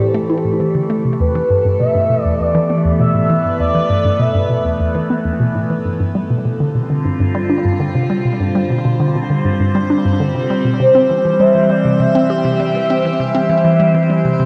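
A hollow, bouncy square-wave pluck riff with detuned chorus, delay and cassette-tape wobble drives this expansive, hypnotic stretch of sequencer-driven ambient space music at 100 BPM in 4/4, while an evolving, bright wavetable pad holds phased chords through Am7, Esus4, G7sus4 and C, and a smooth, expressive sawtooth lead with vibrato, lush chorus and delay sings its melody from 0.0 to 5.1 s and returns at 10.8 s, the mix steeped in a wet hall reverb and worn, warbling old tape as a filter sweep moves across the arpeggiated synth sound.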